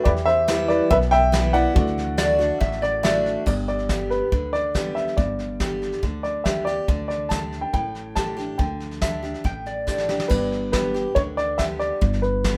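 This sunny, down-home slice of honky-tonk and classic country opens with a woody, short-sustained upright piano carrying the melody up front. Beneath it sit a bright, full-bodied picked dreadnought acoustic guitar and a present grand piano with long sustain in the background, all at a straight 140 BPM in 4/4. A thumpy pizzicato upright bass on gut strings and a soft brush kit join almost at once, the drums sounding distant and roomy with dark cymbals, a medium-tuned snare, a punchy kick and a rolled-off top. The harmony moves from Em to D before settling into G major, where the grand piano drops out. A metallic, nasal lap resonator guitar, played with fingerpicks and slide, adds a brief second line at 2.2 seconds and again at 9.0 seconds, and a drum fill follows shortly after. The grand piano returns at 10.3 seconds on G, and light reverb gives the piece a warm, homespun glow.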